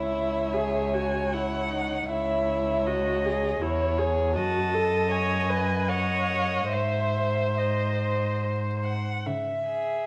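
Classical slow romantic movement for string quartet in a rubato 3/4, elegiac and solemn, cut from a longer piece, where a muted violin carries a veiled melody over a second muted violin line, a soft-attacked muted viola accompaniment and an up-front muted cello bass with light vibrato, all played con sordino with vibrato in a wet recital hall under vinyl crackle as the harmony moves from C#m through D#dim/F# and G# back to C#m at 9.3 seconds.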